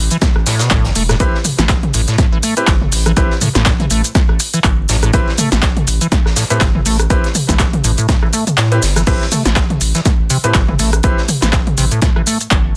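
A swung 122 BPM acid house groove in A minor drives this hypnotic, trippy excerpt, where an overdriven, up-front electronic kick (dropping out from 8.6 to 9.1 seconds) and a punchy analog drum machine with crash, claps, rim clicks, shaker, toms and a short room on its snare play alongside a very quiet acoustic studio kit of hi-hat and snare, while a deep, thick, saturated sine sub bass and a squelchy, hollow square-wave acid riff with resonant filter sweeps, chorus and delay pump against the beat, and brilliant, intimate baby grand piano stabs with audible action noise and delay arrive at 1.2 seconds over a dense, heavily limited, dry mix.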